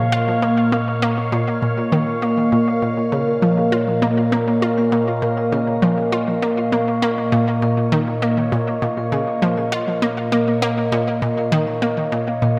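A bright, detuned analog pluck riff with chorus sits up front over a morphing, warbling wavetable pad of sustained chords through phaser, while mellow soft-mallet vibraphone arpeggios with slow motor vibrato fade in from 0.0 to 12.6 seconds in the background, the pluck and vibraphone trailing analog delay and all three parts touched by shimmer reverb, the whole echo-heavy mix bathed in a wet spring reverb in this expansive, mysterious excerpt of ambient, sequencer-driven space music in Bb minor at 100 BPM.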